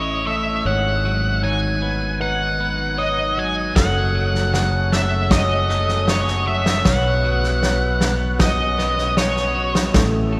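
A brooding, cathartic post-rock excerpt at 78 BPM in 4/4, where a dark, fuzz-drenched lead guitar sings the melody up front over arpeggios from a clean, compressed twelve-string electric guitar and a soft, felt-muted upright piano whose action noise is audible in the background, all anchored by a bright, punchy fingered bass. At 3.8 seconds a reedy, breathing harmonium enters with sustained chords alongside a gritty, up-front drum kit with a fat snare and punchy kick, as the harmony moves from A through G#m7 and F#m to Bsus2. A cathedral-like reverb with a long 6.9-second tail bathes the whole piece in the resonance of a church or concert hall.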